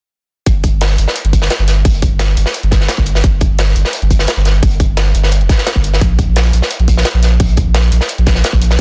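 From 0.5 seconds, a deep, round sine sub bass and a tight electronic kick drum sit up front in this melancholic, soulful liquid drum and bass passage in G minor at 173 BPM, alongside a gritty, saturated acoustic breakbeat kit with a medium-tuned snare and rolled-off top, and a layered electronic hi-hat tucked in the background, the whole mix dense and heavily limited.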